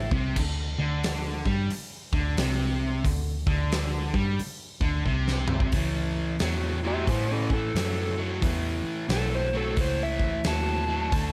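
A lightly reverberant, up-front mix opens this cut from a longer piece of raunchy, driving blues rock and southern rock, swinging at 89 BPM in 4/4. A double-tracked, overdriven guitar riff rides over a round, foam-muted vintage bass and a big-room acoustic drum kit with a fat snare and punchy kick, moving from Csus2 to A after a drum fill at 5.1 seconds. At 6.9 seconds a dark, fingered slide guitar solo enters high above the band.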